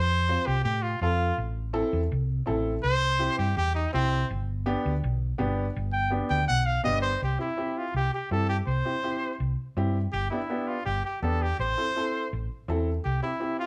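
Recorded as a band playing live in one room with a moderate studio reverb, this sunny, joyful cumbia fragment puts a clear, smooth-topped trumpet up front, its vibrato-laden pop-style solo carrying the melody through the first 7.2 seconds. Beneath it, a dark, round and punchy hollow-body short-scale electric bass holds the low end, amped and fingered. From 0.3 seconds an intimate, woody upright piano with audible action noise and long sustain adds polished accompaniment over a progression that settles back on C.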